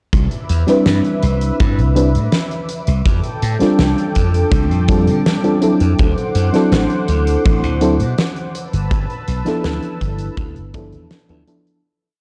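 A woozy, nostalgic vaporwave piece at 82 BPM in C major opens with a thick, detuned sawtooth pad carrying chorus and 12-bit sampler grit. From the same moment, beneath it sit a bright, punchy slap bass playing a funky syncopated line, a slow machine-like kick, and a big-room acoustic kit with a fat snare and closed hi-hat in a slowed pop beat. At 0.7 s a soft, round FM electric piano with chorus and analog delay joins with syncopated rootless chord stabs through Cmaj9, F69, D7 and G13. It is all heard through a dry, gritty hardware recording with transformer saturation and cassette tape, before a fade-out from 7.9 s.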